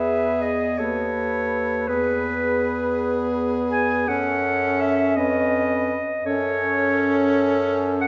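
A serene, tender classical passage for single-reed quartet opens with all four voices together: a clear clarinet carries the melody up front, a mellow alto saxophone with vibrato sings a second line, a tenor saxophone with light vibrato fills in the accompaniment, and a warm, vintage-toned bass clarinet anchors the bass, also up front. In a rubato 6/8 at 55 BPM counted in dotted quarters, the harmony moves from E major through B7/D# back to E, then turns toward F# minor with a C#7/E# before settling on F#m again. A wet scoring-stage reverb lends the clarinet a distant, roomy quality in this brief 8.1-second fragment cut from a longer piece.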